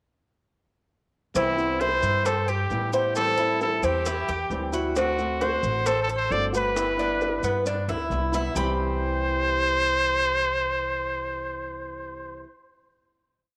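A wet spring reverb bathes this relaxed Cuban son and guajira piece in C major, moving at 133 BPM in a straight 4/4 through a Cmaj7, Am7, D7, G6 progression. A bright, up-front trumpet with vibrato carries a motif-based solo melody over a metallic, double-strung tres guajeo, a fingerpicked flamenco guitar strumming with muted slaps, and a woody, thumpy pizzicato upright bass playing a tumbao that anticipates the chords. Distant, high-tuned bongos in steady eighths and grainy maracas keep time from 1.4 s through a drum fill at 7.7 s that leads into a final Cmaj7 chord at 8.6 s.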